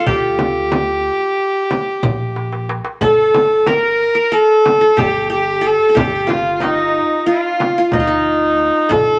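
Soulful and melancholic, this short excerpt from a longer Turkish makam ensemble piece moves in a straight 9/8 metre. A single bowed kamancheh carries the melody up front, its biting, earthy tone colored by light vibrato and portamento. Beneath it, a bright qanun played with fingerpicks adds a second line, its triple strings lending a bright-edged sound. A woody pizzicato upright bass sits low in the mix, while a deep, large frame drum and a crisp metal-shell darbuka, played with soft hands and set in the background, drive the rhythm. A drum fill from 2.4 to 3.0 seconds marks the move into a new section, where the mode shifts, all within a moderate studio reverb and a mellow top end.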